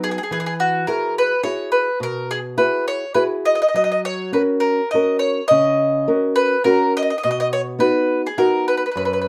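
A bright, picked bowl-back mandolin sings the melody up front, its doubled strings ringing through this romantic, sunny Italian folk serenade in a rubato 3/4. A small, warm fingerpicked nylon-string guitar accompanies it, moving from Eadd9 to F# and then B in moderate studio reverb. The passage is a 9.3-second cut from a longer piece.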